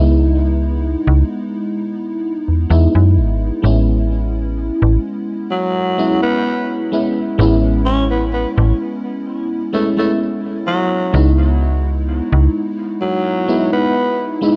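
A lush FM electric piano with a soft pad layer opens this faded, dreamy vaporwave fragment at 0.0 seconds, its mellow chords shimmering through ensemble chorus and tape echo as they drift from C#m9 to Amaj9 and back. Beneath it, a slap-like FM bass sits up front with a snappy, metallic attack that decays, giving the slow, straight groove a digital bite. At 5.5 seconds a growling tenor saxophone takes the solo melody in a jazz style, breathy and raspy with subtone, vibrato and scooped notes, its smooth top roughened by vintage 12-bit sampler grit and trailed by tape echo. The bass drops out at 12.5 seconds, leaving the piano and saxophone to linger briefly before the fragment cuts off. A lush hall reverb and a dark, cassette-tape production wrap the whole piece in a hazy, nostalgic glow.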